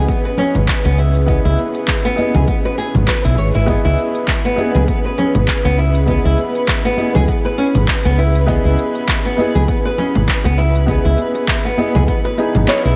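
A round, dark fretless electric bass sits up front in this mystical, organic downtempo passage, its amped, hollow-body tone thickened by ensemble chorus. Around it, a fingerpicked flamenco guitar plays arpeggios with a vintage 12-bit sampler grit and delay, while a soft, felt-muted upright piano adds intimate accompaniment, pulsing with sidechain pumping and its own delay. An ethereal, airy pad holds sustained chords in the background, detuned and chorused with built-in reverb and a sidechain pulse. The groove swings lightly in 4/4: a punchy, layered electronic kick and a produced deep house kit with smooth hats, cabasa, congas and handclaps enter at 0.1 seconds, and ringing, close and dry congas and bongos sit further back. A twinkling granular texture with an octave-up shimmer drifts in at 4.4 seconds, sparkling faintly behind the band. A light digital ambience wraps the mix, and this warm fragment of a longer piece rests on a C#m7 chord.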